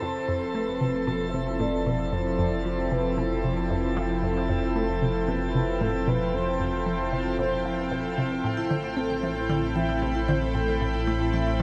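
Bathed in a wet shimmer reverb, this luminous, expansive stretch of sequencer-driven ambient space music opens on a lush, thick unison pad holding sustained chords over a deep, round sub bass, while a squelchy, resonant blip pluck with phaser and tape echo runs its riff and a very quiet bubbling texture steps through random filter changes. A smooth, warbling portamento lead with subtle chorus and tape echo sings the melody until 8.1 seconds, and the harmony shifts from Fmaj7 to Am7 at 8.4 seconds. From 8.6 seconds a metallic, ringing vibraphone with medium mallets and fast motor vibrato adds echoing arpeggios as the piece is cut from a longer whole.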